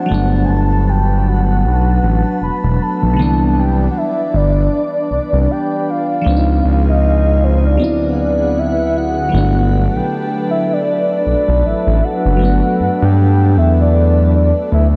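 Swung sixteenths over a relaxed 78 BPM in 4/4 give this romantic, dreamy R&B fragment, cut from a longer piece, an unhurried sway. Up front, a smooth gliding synth bass carries the low end with portamento and vibrato, its wave-folded sawtooth and triangle blend sounding smooth and warm. An FM electric piano with a soft pad layer supplies lush, mellow accompaniment, its decaying tones colored by chorus and phaser, while a glassy, ethereal FM pad holds dark sustained chords behind it through an ensemble chorus and its own built-in reverb. A soft octave-layered synth lead sings the melody with a sub-octave beneath, shaded by tremolo, vibrato, chorus and a diffuse ambient delay. The harmony drifts from Gmaj9 through Cmaj9 and C#maj9 to a D13 break at 7.8 s, then returns to Gmaj9 as a new section begins at 9.3 s, and the whole mix is soaked in a lush hall reverb.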